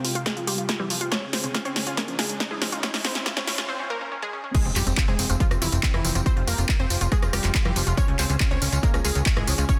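Euphoric and soaring, this uplifting trance excerpt in F minor drives along at 140 BPM in a straight 4/4, built over a cycle of Fmadd9 and Db. A lush, detuned unison pluck carries the melody with a filter sweep through the build-up, while a round, nasal analog pluck spins arpeggios in the background with chorus and digital delay, and a silky, string-like pad holds sustained chords beneath, all three breathing with sidechain pumping. A punchy analog drum machine, overdriven and up front, delivers a fill of snare, handclaps, hi-hat, rim click, tambourine and crash through the opening, with a layered electronic kick entering at 0.3 seconds. A very quiet riser climbs from 0.9 seconds, and after a short break the drop lands at 4.5 seconds with its impact, and a funky, ring-modulated analog bass adds punchy, decaying notes from 4.7 seconds. Light reverb and digital ambience sit behind a dense, heavily limited modern master.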